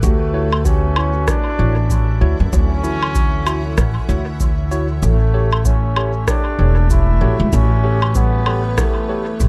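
A light reverb and small-room ambience surround this peaceful, spacious ambient dub excerpt at 96 BPM in 4/4, swung on the sixteenths in A mixolydian, moving from Dmaj9 to A7 at 5.0 seconds. A woody, thumpy pizzicato upright bass sits up front with a deep analog kick, while tape-toned electronic cabasa, woodblock and rim click carry dub echo, and a blurred, slowly evolving granular cloud pad holds sustained chords. A clear, distant classical-style trombone plays the solo melody through dub echo, with a soft, felt-muted upright piano arpeggiating in the background and a clean tine electric piano adding echoed stabs from 0.3 to 9.2 seconds.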